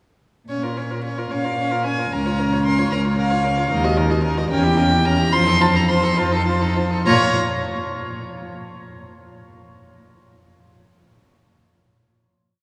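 A reedy first violin carries the melody up front from 1.3 s in this brief, stormy and dramatic classical-period movement for string quartet, played in 6/8 with rubato. From 0.5 s a second violin, with an airy bow and a nasal edge, and a gut-strung viola share a rocking two-note figure and sustained chords, while a dark cello with light vibrato and a smooth top sounds the bass on the beats. The period-style playing rings in a wet cathedral reverb, and the piece ends on a final chord at 7.1 s.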